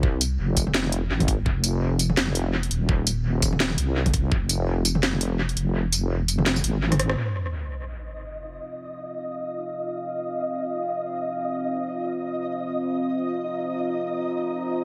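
A deep, soft wobble bass with detuned sawtooth edges and a chorus sheen opens this heavy, spacious half-time drum and bass excerpt at 168 BPM alongside a knocking electronic kick, and a layered drum kit joins a moment later. The kit sits up front with a cracking snare, bright hi-hats, rim clicks, tambourine and toms, all carried on dub echo. The groove swings lightly in half-time. The kick drops out at 5.7 seconds, and a drum fill and band accent lead into a sub drop impact at 7.2 seconds, where the bass and kit stop. A flickering, grainy granular texture fades in at 8.1 seconds, and a dark, moody ambient pad enters at 8.7 seconds with slow-attack sustained chords. The pad is roughened by vintage 12-bit sampler grit and pumps against a sidechain, while a moderate plate reverb gives the whole mix an echo-heavy depth.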